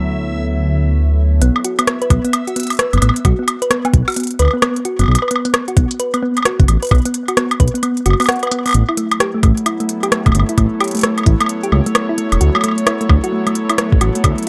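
A dark, detuned sawtooth bass stands out, rumbling and beating up front with a saturated, deep tone through nearly the whole 14-second excerpt of this cerebral, intricate IDM cut in B minor at 131 BPM, with a 62% swing on the sixteenths. It opens alongside a warbling, lo-fi pad with chorus and built-in reverb, plus a faint reversed, granular texture that swells dreamily with sidechain pumping, both dropping out at 1.4 seconds. At that point a round, tine-like FM pluck with a nasal edge enters with chorused, delayed arpeggios, joined by an organic electronic kit of crisp hi-hats, rim clicks and woodblock, while a soft, tape-warm kick arrives at 2.1 seconds. The nostalgic pad returns at 9.1 seconds as the harmony moves from B5 to A and then Dadd9. Light reverb and digital ambience give the mix a close, small-room intimacy.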